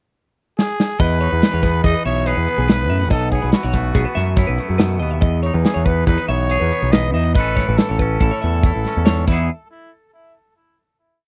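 A 141 BPM groove in 5/4 with a straight feel drives this short, complete math rock and midwest emo piece, playful yet wistful, opening with a pickup bar where the up-front studio drum kit and a raspy, growling trumpet both come in at 0.6 seconds on a drum fill. From 1.0 seconds the band settles into a single section over B7sus4, Emaj7 and A. The punchy kick, medium-tuned snare, hi-hat and crash carry the odd-metre groove, while an overdriven, round electric bass plays a syncopated riff underneath. A twangy electric guitar adds clean, syncopated fingerstyle accompaniment, and a compressed twelve-string electric guitar repeats a bright arpeggio ostinato through lush chorus. The trumpet, gritty with light vibrato and tape echo, plays a motif-based melody of call phrases before a second drum fill at 9.3 seconds sets up the final hit at 9.5 seconds. The sound is dry and close, like a 1970s studio recording, with the drums and bass sitting forward.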